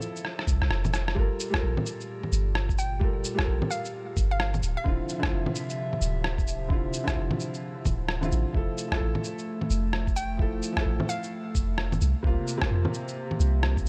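A deep, round 808-style bass with tube saturation and sidechain pumping anchors this rainy, wistful future garage piece at 130 BPM with 62% swing on the 16ths, arriving at 0.5 s together with a muffled, thumpy, pitched-down kick, while up-front, sampler-style shaker, rim click and bongos open with a short drum fill. A felt-muted upright piano adds soft, intimate accompaniment through vintage 12-bit grit and tape echo, and a nostalgic, warbling tape-like pad with chorus and built-in reverb sustains Fmaj7, Gm9, Dm9 and C7sus4 chords from 1.2 s. A hollow, detuned square pluck carries brief high melodic phrases at 2.8 s and once more later on, set in a dry mix.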